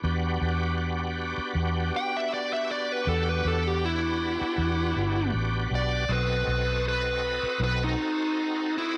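A moderate echo-chamber reverb gives this brief, brooding cut of straight-eighth soul blues in E minor at 79 BPM a smoky, roomy sound. A bright, shouting tonewheel organ with light overdrive, chorus vibrato, key click and a slow rotary speaker holds down the accompaniment, while a round, punchy, foam-muted fingered bass sits up front until 7.9 seconds. A dark, smooth overdriven lead guitar enters at 2.0 seconds with a picked solo as the harmony moves from Em7 to B7b9 at 6.1 seconds.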